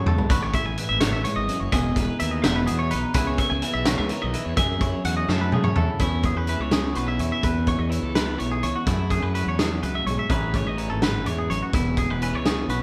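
Recorded live by a band in one room, this intricate, wistful excerpt of math rock and midwest emo sits in a moderate stone-room reverb, moving at 84 BPM in a straight 6/8 in E major, tuned to A4 = 438 Hz. A bright, compressed twelve-string electric guitar carries the accompaniment while a clean, twangy electric guitar picks arpeggios higher up, over a growly fuzz bass with overdrive and a loose, up-front indie drum kit with a fat snare, punchy kick and rolled-off top. The drums open with a fill and fill again from 5.3 to 6.0 seconds, as the chords move from Amaj7, Emaj7, C#m7 and F#m9 to a passage built on E6, F#m9 and Amaj9#11 from 6.0 seconds.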